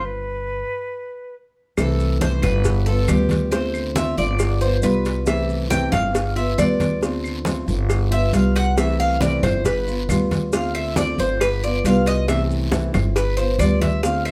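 A bright, metallic Cuban tres with picked double strings takes a solo from 1.8 seconds, weaving arpeggios over a sunny Cuban son and guajira groove at 137 BPM that cycles through C6, G7 and Dm7, with claves, low-tuned congas, a round cowbell, a raspy guiro and grainy maracas sitting in the background. Before that, an airy silver concert flute with a crisp attack sounds a B4 over a stop, while a dark, full-bodied nylon-string guitar, thumb-plucked with finger squeak, and a woody, thumpy upright bass on gut strings play up front throughout. The close, detailed recording carries light reverb, and this excerpt is cut from a longer piece.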